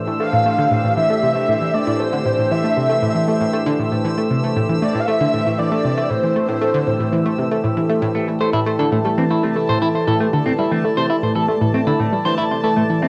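A round, detuned analog pluck sits up front with a repeating low riff bathed in chorus and delay, anchoring this hypnotic, mysterious ambient excerpt over a sweeping, resonant pad that holds evolving sustained chords on a single minor harmony. High above, a bubbling texture with random filter steps glints quietly, while a breathy, flute-like synth lead with vibrato carries the melody until 7.6 s, after which a clean, dark semi-hollow electric guitar enters with fingered, delayed arpeggios from 8.2 s. The whole piece sits in a wet small room with the character of a home cassette recording.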